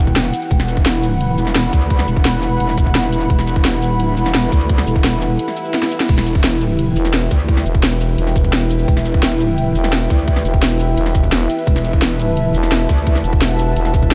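Dark technical drum and bass at 172 BPM in E minor, this mechanical, dark excerpt opens on an Emadd9 chord held by a moody, detuned analog pad, joined at 0.4 s by a warbling ambient pad in the background, both pumping against the tight, layered electronic kick and a kit of cracking snare, hi-hat, crash and cabasa. Up front, a metallic, saturated wobble bass snarls in the low register with chorus until 13.2 s, while a brief break at 5.4 s brings a very quiet electronic swell and a drum fill. From 7.0 s a thick, growling FM bass joins on a low E, adding weight to the light digital ambience.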